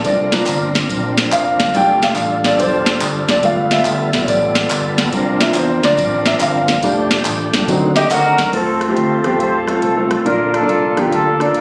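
This uptempo gospel excerpt opens on a concert grand piano taking the solo, intimate and boxy with audible action noise, over a gritty overdriven tonewheel organ holding sustained chords through a fast rotary speaker and chorus vibrato, a punchy fingered electric bass, a booming analog drum machine with a deep kick and metallic hats, and tambourine with group handclaps, all swinging at 141 BPM in F major. The mood is reverent and soulful, moving through chords like C9sus4, F69 and D7b9 before reaching F and then Bb. At 8.0 s a mellow, vintage horn section enters with the melody, and the tambourine and handclaps stop at 8.5 s, all heard in a phone recording made in the room, with light reverb and compression.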